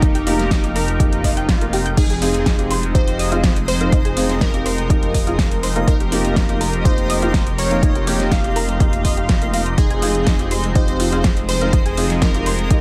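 A straight 4/4 pulse at 123 BPM drives this emotional progressive house excerpt in F minor, anchored by an up-front, overdriven electronic kick with a deep, layered punch and a pop drum kit of fat snare, metallic hi-hats and crash cymbal, both re-recorded in a small room. Beneath them a dark detuned saw bass holds F1 with a rumbling, beating, saturated tone, pumping against the kick alongside the other pitched parts. A punchy, catchy plucky unison lead carries the melody between Eb4 and F5, colored by cassette tape character and delay, while a felt-muted upright piano adds mellow, intimate stabs with its own delay. In the background, an airy filtered supersaw swell sustains the chords and a soft round pluck spins chorused, delayed arpeggios up to G6, as the harmony moves between Ebadd9/F and Fm7. A very quiet electronic swell sounds from 1.3 to 2.0 seconds, and from 2.4 seconds a twinkling granular texture with octave-up shimmer and built-in reverb sparkles behind it all in a digital ambience.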